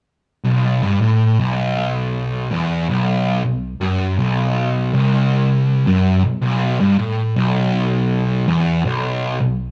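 A double-tracked, fuzz-drenched electric guitar sits up front, picking a low, sludgy riff between B1 and A2 from 0.4 to 9.7 seconds in this brooding metal excerpt, its distorted tone wrapped in the moderate reverb of a stone room where the band plays live.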